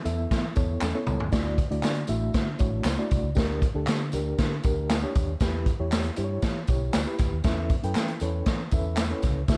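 This uptempo 1960s-style soul excerpt in D major moves at 118 BPM with a joyful, warm feel, as a reedy electric piano with a fast tremolo and a round, punchy fingered electric bass carry the chords from Aadd9/E through Dadd9, Gm/D and Em. A roomy big-band drum kit with a boomy kick sits up front, while tambourine and handclaps stay in the background. A slightly broken-up, lo-fi electric guitar adds brief stabs from 0.8 to 1.0 s during a drum fill that lasts until 1.3 s, all within a dark, dry production.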